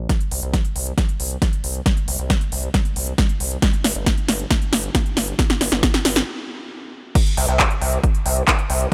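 A gritty, nasal sawtooth synth bass with distortion, oscillator sync and a filter sweep sits up front, its sidechain pumping driving this emotional uplifting trance fragment at 136 BPM in a straight 4/4. An analog-toned electronic kick and a layered, overdriven big-room kit with a punchy snare, crisp hi-hats, handclaps and crash cymbal build up through a drum fill until 6.3 seconds, then stop briefly before the drop lands at 7.2 seconds. The mix has light reverb and a digital ambience.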